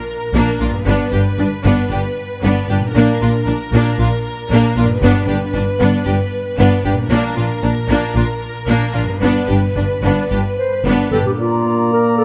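Closely and clearly recorded with a touch of reverb, this cinematic string passage, cut from a longer piece, builds with triumphant, heroic intent at 115 BPM in Bb major. Smooth violins carry the melody over a lush second violin line, a rich viola accompaniment, a dark cello section and an intense, bright double bass section, while a ringing concert harp plays background arpeggios and the harmony rocks between Bb and G. A dark, roomy clarinet enters at 10.6 seconds, and at 11.4 seconds an airy flute section, a mellow cor anglais and a French horn section holding sustained chords join as the music lands back on Bb.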